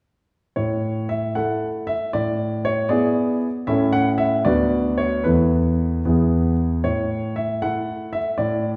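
A smooth, vintage grand piano plays a playful, elegant classical-period sonatina alone in A major at 77 BPM in a straight 6/8, reaching from D2 up to F#5 as its harmony moves from A through E7/A, Bm/D and Esus4 before landing back on A at 6.8 seconds, all heard from further back in a wet recital hall with a lingering reverb in this brief passage from a longer piece.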